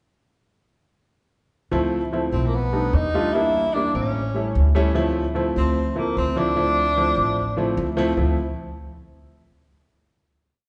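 Fiery and driving, this short, complete Afro-Cuban jazz piece opens at 1.7 s with a concert grand piano and an upright bass entering together. The piano, warm and intimate with audible action noise and a natural, short sustain, sits up front with syncopated chord stabs in rootless voicings. The pizzicato bass has a woody, thumpy tone from gut strings and plays a tumbao line that anticipates each chord change. At 2.3 s a mellow tenor saxophone joins with vibrato, building a solo melody from call phrases. Its sound is distant and roomy even as it sits forward in the mix. A wet recital-hall reverb gives the whole piece a church-like space with a soft, rounded top end, and it closes on a final chord held from 8.2 s.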